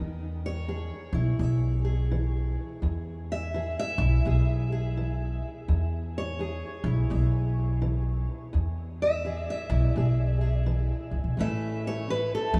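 A loping swung 4/4 at 84 BPM sets up this laid-back, gritty acoustic country blues in E major, where a fingerpicked steel-string acoustic guitar sits up front with a diffuse ambient delay and plays a solo across the whole 12.6-second fragment, while a woody, growly pizzicato upright bass thumps beneath it, all in a small, lightly reverberant room as the harmony rests on E before shifting to A at 11.4 seconds.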